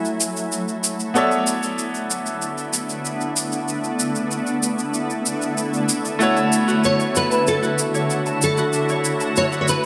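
A bright, 1980s-style digital production sits in a lush plate reverb, giving this short cut from a longer sunset chillout piece a smooth, warm glow. A brilliant grand piano carries the accompaniment with delay, while a shimmering, ethereal ambient pad holds sustained chords up front, its detuned, granular tone colored by chorus, an octave-up shimmer and a filter sweep that runs throughout. An electronic, layered shaker drives the groove with overdrive and the spacious sound of a large room. A ringing Celtic harp enters at 6.4 seconds with fingerpicked arpeggios, and at 6.8 seconds a full-bodied nylon-string guitar takes the melody up front, its deep classical tone carrying audible finger squeak through ensemble chorus and delay. Underneath, the harmony moves from F#m9 to Bm11 and settles on A6.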